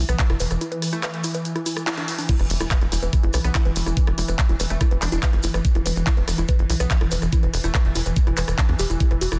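Dense, heavily limited and dry, this psychedelic trance excerpt has an alien feel, as a swarming, detuned drone pumps beneath a dark, woody wave-folded pluck riff with chorus and digital delay, a punchy, up-front sequencer bass drives with a knocking electronic kick, and a metallic, saturated wobble bass sits in the background with tape echo, while a big-room dance kit of crash, handclaps, hi-hat and rim click joins grainy maracas through a break from 0.6 s into a drop at 2.3 s, marked by a very quiet impact lasting until 4.0 s.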